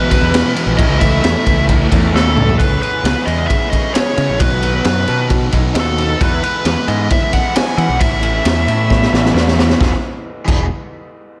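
Quiet-loud alternative rock in E major at 133 BPM, this anthemic, restless passage is cut from a longer piece and set in a lush hall reverb that gives it a big arena sound. A nasal lead guitar with a parked wah carries the melody from the start until 9.3 seconds, overdriven and touched with slapback echo, while a bright cranked stack guitar with phaser and slapback echo holds a riff in the background from the start until 10.6 seconds. For the opening 2.6 seconds a thick fuzz guitar and a very quiet, double-tracked biting overdriven guitar reinforce the low riff, dropping out as a very quiet fingerpicked steel-string acoustic guitar spins arpeggios until 6.2 seconds. Up front, a raw garage drum kit with a high-tuned snare, punchy kick and pumping, saturated small-room character drives the song, with fills marking the section turns, alongside a growling picked bass that is direct, amped and overdriven. 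The chords move from E and A into C#m7 and B before returning to E.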